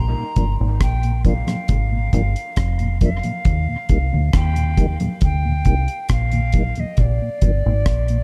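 A dark, reverberant studio haze hangs over this short cut from a longer dub reggae piece, laid-back and unhurried at 68 BPM in 4/4 with a straight feel in Eb major. Up front sits a deep, foam-muted fingered electric bass, round and punchy with a direct, amped tone, carrying the low end from the first moment, while a mellow tonewheel organ slips in at 0.2 seconds, its clean, dusky voice colored by chorus vibrato and a slow rotary speaker. A dry, acoustic reggae drum kit joins at 0.4 seconds with a tight kick, hi-hat and rim click, sitting close and present beside the bass. Soft-handed congas, medium-tuned and ringing in a small room, stay in the background under a dub echo and drop out at 7.6 seconds. Floating above it all is an airy concert flute with a straight, tongued tone, its melody trailing dub echoes as the harmony moves from Bb to Eb and back to Bb.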